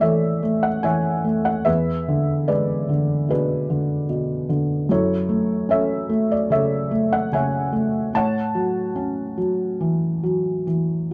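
Classical solo piano in a lyrical vein, this short excerpt from a longer piece moves at 73 BPM in 4/4 with a flexible, rubato feel in A major. The mood is calm and gently warm. A felt-muted upright piano carries the music alone from 0.0 to 11.1 seconds, spanning E2 to A5, and its tone is soft, mellow and intimate, with a short sustain that keeps each note close and hushed. The harmony moves from A through E7 and F#m7 before settling on A6 around 8.1 seconds. The instrument sits up front in a dark production, touched by a light reverb.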